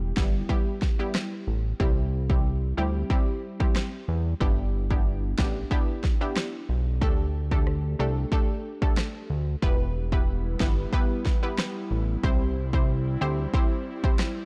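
Punchy, up-front electronic drums with a fat snare drive this hypnotic, tough dancehall excerpt, set over a thick, saturated analog bass, a round, detuned pluck with chorus and sidechain pumping, and an airy, breathy pad that enters at 10.0 seconds in a dark, dry production.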